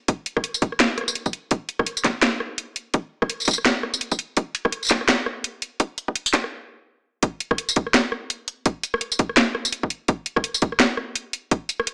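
Through a thin, high-passed, small-speaker sound with a moderate digital room reverb, this heavy, cinematic drum and bass excerpt at 168 BPM rides a half-time, 58% swung groove, where an up-front overdriven kit of cracking snare, bright hats, rim click and tambourine plays alongside a hard-clipped, tape-warm electronic kick through a build-up that halts at 6.5 seconds before the drop lands at 7.2 seconds.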